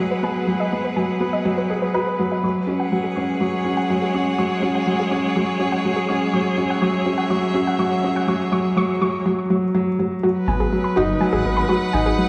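Cinematic and moving, this piano and strings electronica excerpt runs at 123 BPM in a straight 4/4, moving from G#m7 to F#sus2 as a build-up carries a filter sweep on the soft, round pluck's warbling, vintage arpeggios, which sit in the background with chorus, cassette tape character and tape echo. Up front, a mellow, intimate felt-muted upright piano plays a riff through tape echo, while a bright, focused string quartet holds bowed chords with vibrato, all in a concert hall reverb. At the drop at 10.2 seconds the harmony returns to G#m7, and a deep, rumbling, detuned saw bass enters at 10.5 seconds with saturated, beating weight.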